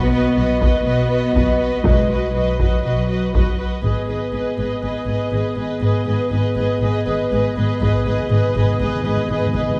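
A dark, warm concert-hall sound carries this heroic, epic orchestral film-score passage in G# minor at 121 BPM, where lush, vibrato-rich violins carry the melody over a more distant second violin line, warm violas and tight, sustained French horn chords, while close cellos and expressive bowed double basses anchor the bass, vintage, band-limited taiko drums sit in the background from 0.6 seconds, and articulate hard-mallet timpani join for a fill at 7.8 seconds.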